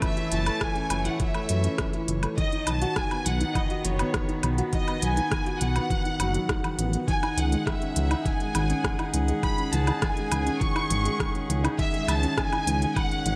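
A dark, detuned sawtooth bass sits up front from 0.3 s, its deep, rumbling tone beating against itself and pumping under sidechain compression in this hypnotic, moving piano-and-strings electronica, set at 102 BPM in a straight 4/4. A muffled, thumpy kick, pitched down and compressed with a sampler character, shares the front of the mix until 13.1 s. An electronic kit with crisp hats, rim click and woodblock adds a tape-softened, small-room texture. A felt-muted upright piano repeats a soft, intimate riff in its middle register with audible action noise, while a nasal, reedy string quartet in period style holds gut-string chords that also pump with the sidechain. Above them, a distant violin section carries a smooth, even melody with vibrato through the F#m7, B and C#sus2 changes, all under a light reverb.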